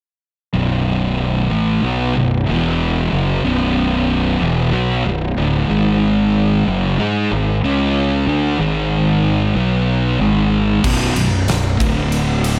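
Ominous and sludgy, this short section cut from a longer stoner and doom metal piece moves at a heavy 93 BPM in straight 4/4, centred on B dorian. From 0.5 seconds a thick, double-tracked fuzz guitar sits up front with a distorted riff ranging from B1 up to G#4, moving through power chords on B, E, G# and C# with a brief B minor along the way. A fingered electric bass holds down the low end throughout, its overdriven, growly tone sitting a little lower in the mix as it reaches down to B0. At 10.8 seconds a big acoustic rock kit enters for the closing section, with a punchy kick, a fat snare, crash and ride cymbals, all in a bright stone room. That final stretch lands on B and then D power chords before the section cuts off at 12.6 seconds, with a light studio reverb lending the mix some air.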